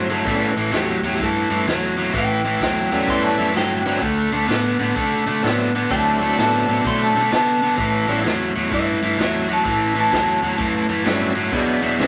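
Laid-back and gritty, this electric blues shuffle excerpt swings at 128 BPM over A7, D7 and E7 chords, with a twangy, slightly broken-up lead guitar carrying the melody until 10.9 seconds above a biting, up-front overdriven guitar riff, a dark, foam-muted fingered bass, a big-band drum kit with a punchy kick on hi-hat, kick and snare, and a shouting tonewheel organ colored by slow rotary speaker, overdrive and chorus vibrato, all set in a wet small room.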